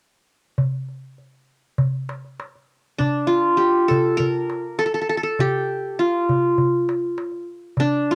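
Hypnotic and melancholic, this short cut from a longer Turkish makam ensemble piece moves at 100 BPM in a straight 4/4, set in D makam ussak with tuning at A4 = 439 Hz. A darbuka opens alone at 0.6 seconds, its clay shell and natural skin giving a small, high voice that sits up front in a small room. At 3.0 seconds the qanun joins to carry the melody between D4 and Bb4, played with fingerpicks on triple strings for a bright-edged, up-front tone. The darbuka drops out at 7.9 seconds, leaving the qanun briefly on its own. Light reverb and the ambience of a small room surround the pair, captured in a home recording on cassette.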